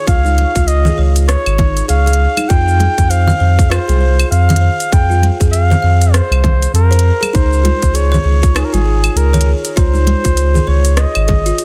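A bucket-muted trumpet carries the melody with a veiled, mellow tone, light vibrato and scooped notes in a jazz style, its tape echo drifting over a buzzing, woody kalimba that rings out arpeggios in this earthy, mystical organic downtempo excerpt at 99 BPM with a 16th-note swing. A round, up-front sine sub bass with tube saturation and sidechain pumping anchors the harmony as it moves from Dbadd9 to Fm at 2.5 seconds and back at 7.3 seconds. A tight, overdriven electronic kick and a kit of crisp hi-hat, cabasa, claves and rim click drive the groove, while bright hard-hand congas sit in the background, all under light reverb and a dense, heavily limited master.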